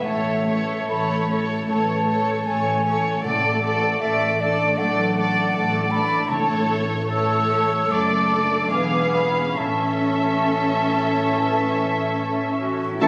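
Caught on a phone in a studio with moderate scoring-stage reverb and compression, this lyrical classical excerpt moves at a rubato 67-82 BPM in A major. Its veiled, con sordino violin sections carry both the melody and a second line beside an airy flute, over close viola accompaniment, bright, ringing harp arpeggios, and a dark bass of double basses with cellos in the background. Very quiet timpani sound from 3.3 to 7.5 seconds as the chords pass from A through D/A and D/F# to E7b9 and home to A; in the final moments a clear clarinet slips in, and at 13.0 seconds a distant oboe, a bassoon, mellow horns, barely audible trumpet stabs and a roomy tuba arrive.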